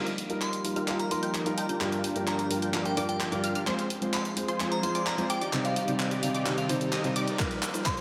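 This eight-second excerpt from a festival progressive house track in Eb major, moving at 129 BPM in a straight 4/4, opens as a build-up with an intimate grand piano up front, its action noise audible, carrying the accompaniment under sidechain pumping and dub echo. Around it, a thick, warbling vintage pad holds sustained chords with chorus in the background, a bright, detuned unison pluck runs high arpeggios through a phaser and a filter sweep, and a huge, compressed supersaw with a sub octave drives the riff through a low-pass filter and a filter sweep, while a very quiet riser sits beneath. The house drum kit, tape-toned and re-recorded in a large room, joins at 0.1 s with handclaps, hi-hat and shaker, playing a fill that spans the whole passage. A glassy, crystalline FM bell enters at 0.4 s with the melody, shimmering through chorus, phaser and dub echo. The harmony moves through Ebadd9, Gm7, Fm and Cm before returning to Ebadd9, and a punchy, layered electronic kick lands at 7.4 s to crown the triumphant, anthemic lift. 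A lush hall reverb wraps the mix.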